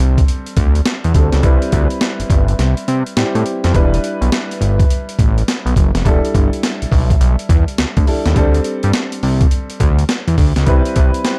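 A fat, detuned sawtooth analog bass with a filter sweep sits up front in this bouncy, slick new jack swing excerpt in E minor at 104 BPM with swung sixteenths, alongside a gritty, compressed breakbeat sampler-style kit whose thumpy kick drops out from 2.6 to 3.7 seconds, and a clear, open baby grand piano accompanying over D7sus4, Cmaj7 and Em7 in a dark, dry production.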